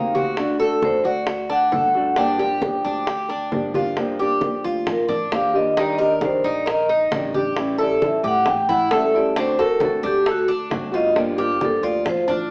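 A ringing vintage vibraphone opens this nostalgic, sultry slice of Cuban son and guajira in G minor at 134 BPM, over fingerpicked nylon-string guitar, a bright up-front tres picking arpeggios on double strings, and a woody pizzicato upright bass with gut strings. Tight, high-tuned bongos struck with hard hands sit close and dry, while low-tuned congas played with soft hands stay in the background. From 4.0 s the vibraphone, with medium motor vibrato, takes a solo, and the whole is heard from further back in a large studio with moderate reverb and a small-speaker sound.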